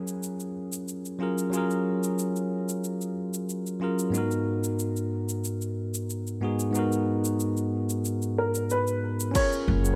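Sunset chillout with a blissful, smooth mood, where a bright, bell-like tine electric piano with tape echo carries the F#maj9 and G#m9 chords over a tape-warm electronic shaker and crash cymbal in a lush hall reverb, before a dark, intimate baby grand piano with audible action noise and tape echo takes the melody at 8.4 s, a deep, overdriven electronic kick lands at 9.4 s, and a woody, thumpy pizzicato upright bass enters up front at 9.7 s.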